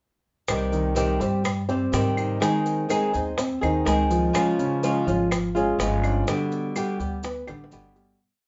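A nostalgic, warm Cuban son piece in the guajira style begins at 0.5 seconds with an up-front flamenco guitar, fingerpicked and strummed with muted slaps and finger squeak, over a thumpy, gut-strung upright bass whose pizzicato tumbao anticipates the chords as they move from C minor through A-flat and D-flat to G. Close, dry percussion fills in behind: tight, high-tuned bongos play steady eighths with soft hands, woody claves tap a two-bar time line in the background, and grainy, mellow maracas shake along, while a concert grand piano with deep bass joins at 0.7 seconds with a montuno in octaves. The band sounds like it is playing live together in one room with a wet studio ambience and a dulled top end, fading out from 6.3 seconds as a drum fill closes the piece.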